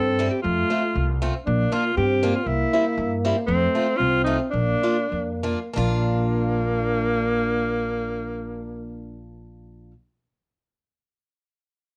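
This bouncy, festive alpine folk clip, cut from a longer piece in two-four time, opens with alto saxophone, euphonium and upright bass sounding together, joined by a picked steel-string acoustic guitar at 0.2 seconds. The up-front alto saxophone carries the melody in a classical style with vibrato, a smooth top and the sheen of plate reverb. Beneath it, the dark euphonium plays a second line with light vibrato, while the woody, growly upright bass is plucked pizzicato. The boxy parlour guitar is picked as an up-front accompaniment over changes that move through F, Bb and C7. The dance band slows down between 3.5 and 5.8 seconds, after which the opening passage gives way to a new section. A moderate studio room and the warbling pitch drift of worn old cassette tape give the whole recording a homely, faded character.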